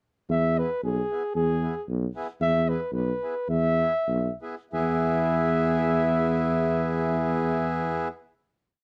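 Alpine folk for a small dance band, this short, complete piece in E major moves at a bouncy, jolly 2/4 between 90 and 115 BPM, easing into a slowdown from 2.4 to 4.7 seconds before a held final chord. A smooth-topped flugelhorn carries a motif-based melody in period phrases in a classical style, while a warm tuba with vibrato, sounding distant and roomy, plays root and fifth on the main beats. From 0.6 seconds, a reedy, dry-tuned accordion, close-miked and full, adds off-beat triad chords, all in a room with little reverb.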